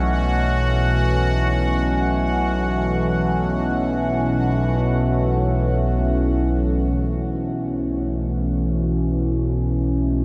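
Dark ambient drone in free time, vast and ominous, this passage cut from a longer piece rests on a Bsus2 chord: a nasal, pulse-width-modulated analog drone with chorus sits up front beneath a detuned, wave-folded resonant pad treated with chorus and phaser, while a bright, bubbling sawtooth texture with random filter steps and its own reverb hovers above until 7.0 seconds. A filter sweep moves through the drone for the first 6.9 seconds, and at that point a barely audible tam-tam sounds briefly. The dark, warm production is bathed in a huge, wet reverb that makes the space feel immense.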